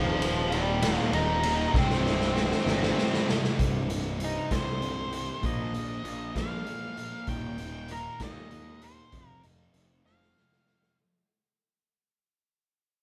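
Quiet-loud alternative rock in 6/8 at 65 BPM, a brooding, dark C minor excerpt cut from a longer piece, with an up-front octave-fuzz lead guitar carrying the melody over a gritty, punchy garage drum kit and a growly overdriven bass, all heard as a band playing live in one room with moderate reverb. For the first 3.6 seconds a barely audible phased string machine on violas, a very quiet double-tracked distorted guitar and a quiet fuzz guitar join a thick fuzz guitar riff in the background, with a drum fill leading into the second part. From 3.6 seconds the lead guitar takes a solo while a faint twangy clean guitar plays arpeggios over chords moving from C5 through Bb5 and Eb to F5 as the music fades out.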